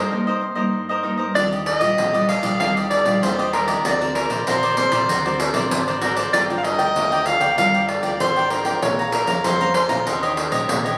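A warm soprano saxophone carries the melody up front, played jazz style with a light vibrato, subtone, soft attacks and scooped notes, its line treated with tape echo as it enters at 1.4 seconds. This is a yearning yet lively blend of samba and choro in Eb major at 96 BPM in a straight 4/4, cut from a longer piece. A bright, crisp, picked cavaquinho and a deep classical nylon-string guitar, fingerpicked with audible finger squeak, open the recording together as accompaniment through a short break before the other parts arrive. From 1.4 seconds a jingly pandeiro sits up front with a distant, large-room character, while a fingered electric bass, amped and shaped by an envelope filter, supplies a warm low end. Chords move from Cm7 through Ebmaj9, Daug7, Gm7 and Bbm9 to settle on Eb6. The sound is bathed in a wet large studio reverb with a club ambience, captured on a phone in the room and compressed.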